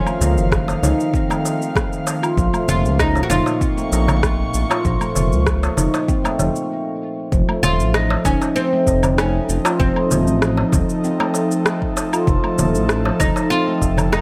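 Set in a light, small-room reverb, this meditative, earthy organic downtempo excerpt pairs a woody, plectrum-plucked oud melody with delay, a bright stainless-steel handpan playing arpeggios through tape echo and a low-pass filter, a breathy, detuned pad holding sustained chords with chorus and sidechain pumping, and a saturated, up-front synth bass, alongside a crisp metal-shell darbuka, a deep electronic kick and tape-toned electronic woodblock, shaker and rim click, with a brief stop from 6.7 to 7.3 seconds.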